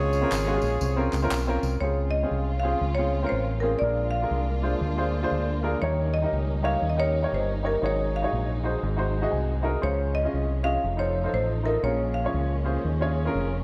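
Uptempo gospel with a swung, reverent yet jubilant feel, this excerpt opens with a close-miked saxophone section carrying the melody through tape echo, joined briefly by dry tambourine, egg shaker and group handclaps. At 1.8 seconds a bright, woody hard-mallet marimba takes over the melody while a lush bowed string section holds smooth sustained chords. Underneath, a clear, slightly worn concert grand piano with short sustain accompanies throughout and adds a fill at 9.1 seconds, and a round, punchy fingered electric bass sits up front, all in light reverb.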